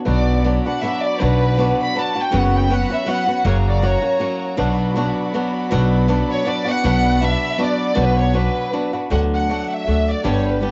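A dark, muffled home cassette recording in a small wet booth carries this dramatic, passionate mariachi excerpt in swung triple time, where an up-front, lush violin section sings the expressive melody with vibrato and portamento through cassette tape colouring and plate reverb, over bright, fingerpicked flamenco guitar with audible finger squeaks and a woody, thumpy pizzicato upright bass, while a distant, focused second violin section holds sustained chords in the background until 9.1 seconds, when the harmony shifts to D.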